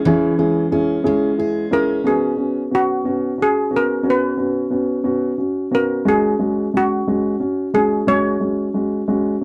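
A slow 6/8 pulse at 60 beats per minute in dotted quarters, played straight, carries this tender, heartfelt pop fragment cut from a longer piece, with its tuning set slightly high at A4 = 445 Hz. A picked steel-string acoustic guitar opens with full-bodied arpeggios, sounding only until 2.6 seconds. A dark upright piano enters at 0.1 seconds and holds the accompaniment to the end, its mellow, woody, somewhat boxy tone sitting up front. From 1.7 seconds a steel pan takes the melody, struck with hard rubber sticks for a bright, shimmering, metallic lead that is close-miked and dry. The harmony moves from C#m to Bsus2 and then to F#sus2, and the dry, close studio sound recalls 1970s recordings, with little reverb.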